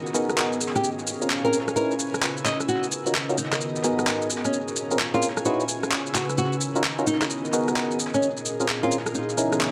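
A swung two-step garage groove at a bouncy clip drives this moody excerpt, its layered electronic shaker, rim click and handclaps sitting up front with a small room ambience and tape echo. Hollow, nasal organ stabs with a fast attack and dark chorus punctuate the beat, their decaying hits trailed by analog delay. Over a cycling progression of minor seventh chords that moves from Abm7 through Bbm7, Dbm7 and Ebm7, an ethereal, mellow pad holds sustained chords with ensemble chorus, and a filter sweep runs across the ambient pad for the whole stretch. A soft, breathy second pad adds a high airy texture above it. From 0.8 seconds a small, fingerpicked nylon-string guitar carries the melody with tape echo, and the echo-heavy mix is dusted with vinyl crackle and a moderate plate reverb.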